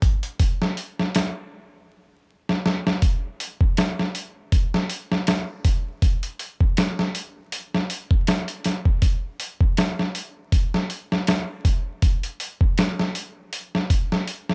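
An 80 BPM 4/4 groove swung at 56% on the sixteenths drives this smoky, dark trip hop fragment, carried by a gritty, compressed, up-front sampler-style soul drum kit of hi-hat, thumpy kick and medium-tuned snare, overdriven and caught in a small room, which halts at 1.5 seconds for a stop broken by a fill at 2.5 seconds before settling into the next section at 3.0 seconds, all kept dry under a haze of vinyl crackle.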